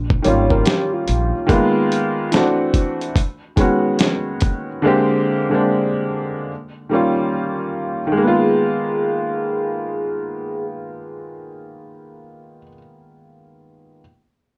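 Hazy, nostalgic lo-fi hip hop at a swung 72 BPM in G# dorian, where a woody pizzicato upright bass and a mellow tine electric piano, heard through its built-in speakers with low-pass filtering and analog delay, sound only in the opening moments, a gritty, overdriven sampler-style drum kit with a thumpy kick and fat snare stops at 4.7 s, an intimate felt-muted upright piano softened by cassette tape and a low-pass filter carries the jazzy ninth and thirteenth chords throughout, and a ringing soft-mallet vibraphone with slow motor vibrato adds a vintage, band-limited melody from 8.2 s to 10.6 s, all in a moderate studio reverb.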